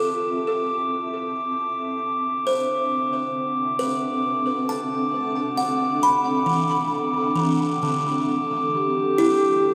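A buzzing, woody kalimba plays arpeggios with tape echo over a cloudy granular pad that fades in with sustained, detuned chords, while a glassy glass harmonica adds a pure, ethereal texture in this weightless, dreamy ambient excerpt at 68 BPM, moving from a rootless Fmaj7 to D7 and then Em7 at 8.7 s, when a mellow, hollow alto flute enters with a vibrato-tinged melody, all within a cathedral reverb.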